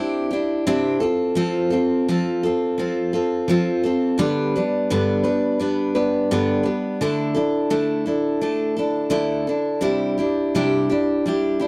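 A dry, close 1970s-style studio sound with light reverb frames this nostalgic, jangly rock excerpt at 85 BPM in a straight 4/4, where a lone picked steel-string acoustic guitar, woody and full-bodied with the character of old strings, sits up front and moves through Cadd9, F, G and Dsus2 before returning to Cadd9 at 9.8 seconds.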